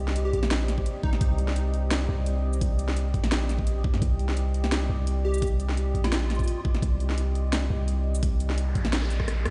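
Played back on a big sound system in a bare stone room, this dry, dull-topped cut of tense, dark half-time drum and bass sits on a long, deep sine 808 bass and a knocking, overdriven electronic kick, both up front. An overdriven, layered kit adds a cracking snare, bright hats, rim click and shaker, while a moody, detuned sawtooth pad with slow attack, chorus, reverb and vintage sampler grit pumps quietly underneath. A punchy, catchy square-wave lead with analog chorus and dub echo appears in two short bursts, and a faint noise sweep enters at 8.4 s before a drum fill at 8.9 s and the kick dropping out at 9.3 s.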